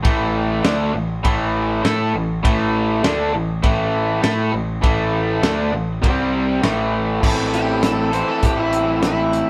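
A crunchy, double-tracked electric guitar sits up front, picking a bright, overdriven riff in this driving, brooding classic rock excerpt in straight 4/4. Beneath it, a growling picked electric bass with its own overdrive holds the low end. A damped 70s acoustic drum kit keeps time with a fat snare, tight kick, hi-hat, and dark crash and ride cymbals, its dry sound rolled off at the top. The power-chord riff centres on A before touching C and returning, then settles onto A minor as an overdriven slide guitar enters at 7.5 seconds with a warm, fingered solo line. The band sounds as though it is playing live in one room, with a light reverb around it, and the passage is cut from a longer piece.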